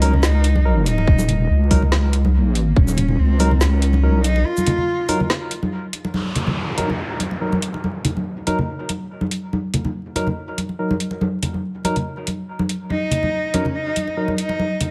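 A dark, bowed cello melody with vibrato opens this meditative, heavy deep dubstep excerpt in Eb dorian at 142 BPM with a half-time feel. From the start it is joined by barky tine electric piano stabs through a low-pass filter, a wobbling square-and-sine bass with chorus, a garage kit of woody snare, metallic hats and shaker, and ringing congas steeped in dub echo. A tight electronic kick enters at 1.1 seconds, a break arrives at 4.5 seconds, and an electronic downlifter marks the turn at 6.1 seconds as a filter sweep works the electric piano amid light reverb and vinyl crackle.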